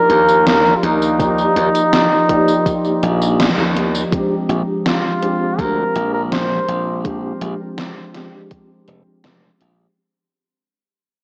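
The recording sounds worn and warbling, like an old cassette played through a small speaker, with a drifting pitch and a soaked concert-hall reverb around it. This woozy, nostalgic vaporwave fragment, cut from a longer piece, sits on an Ebmaj9 chord before moving to Bb13. A smooth-topped flugelhorn carries the melody up front with tape echo until 7.0 seconds, over a mellow tine electric piano treated with ensemble chorus and analog delay. A glassy, punchy slap bass with tube saturation anchors the low end, while a faint, dark, detuned pad hums beneath the opening chord. The overdriven drum machine supplies hi-hat, gated snare and tambourine, and a thumpy electronic kick joins at 1.2 seconds. The band hits a brief accent before everything fades out from 4.1 seconds.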